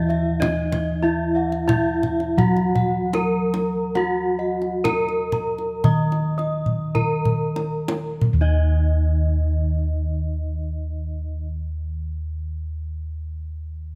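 Close, detailed microphones and a light reverb give this cut from a longer Javanese gamelan piece a clear, present sound, with a shimmering and stately mood in a straight four-beat metre. Up front, a bronze metallophone struck with a horn mallet carries the melody in a bright, airy voice, its paired tuning producing shimmering beats. Beside it, a second metallophone rings out arpeggios higher up, while a set of bossed gongs played with padded beaters adds soft, mellow arpeggios from up front. Lower bossed gongs supply a round, beating bass that sits in the background. The kendang, played with hard hands, has a tight, compressed and saturated tone. The music slows from 1.0 to 8.2 seconds, capped by a drum fill from 6.7 seconds, and a new section begins at 8.2 seconds, shortly before the kendang drops out at 8.8 seconds.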